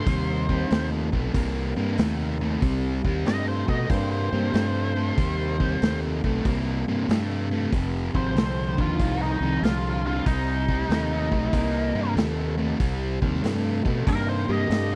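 Smoky and gritty, this blues rock power trio groove with a southern rock edge swings at 94 BPM in 4/4, moving from C minor to F5 at 7.7 seconds and back to C minor at 10.3 seconds. A sludgy, double-tracked distorted guitar riff sits up front beside a growly fuzz fingered bass and a vintage drum kit with a tight kick, medium-tuned snare and rolled-off top. A dark octave-fuzz lead guitar with wah carries the melody, and a second lead through a small cranked amp slips in from the background at 14.1 seconds, all captured in a dry, close 1970s-style studio sound with tape saturation and small room ambience.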